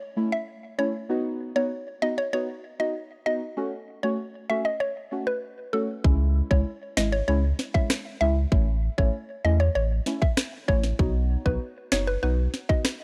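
A straight 4/4 dancehall groove at 97 BPM sets a sultry, tough mood in this short cut from a longer piece, though the drums hold back until 6.0 seconds. Before then, a deep, dark chord stab with a soft, wave-folded edge pumps against a sidechain under chorus and phaser. Above it, a woody, round mallet-like pluck carries the melody, its percussive FM tone touched with a noise layer and trailing tape echo. At 6.0 seconds an electronic island pop kit arrives up front, overdriven, with a tight kick, sharp snare, rim clicks and finger snaps. It is joined by a thick, saturated sub bass with a fast attack and sustained body. The chords move through A, B, F#m and C#m, and the dry, gritty hardware sound carries little reverb.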